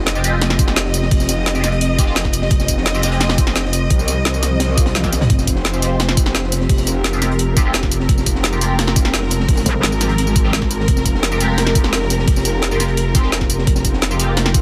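Aggressive and tense, this dark technical drum and bass cut rides on a metallic, wobbling FM bass with chorus, pushed up front, while an overdriven electronic kick and a layered drum and bass kit of woody snare, bright hats, tambourine and toms drive hard from the opening second, with a very quiet, gritty breakbeat kit underneath. A swarming, detuned drone holds an Fmadd9 chord in the background with sidechain pumping, joined by lush bowed strings with vibrato and a nasal, band-passed chord stab treated with phaser, ensemble chorus and tape echo. An electronic swell and a drum fill arrive around 5.0 seconds, and a brief, brighter bass note stabs out at 9.7 seconds in the dense, heavily limited mix.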